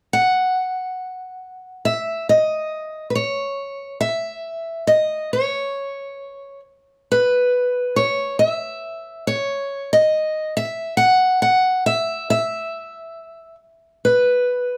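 A picked steel-string acoustic guitar carries this brief folk excerpt alone, sitting up front with a warm, boxy body and a slapback echo trailing each note. The mood is intimate and heartbroken, set in a slow, straight 4/4. The guitar stays in a narrow upper register, moving between B4 and F#5, and plays from 0.1 to 14.8 seconds. Its phrasing falls into two passages, the second arriving at 7.5 seconds. Close, detailed microphones and a modest small-room reverb keep the sound near and personal.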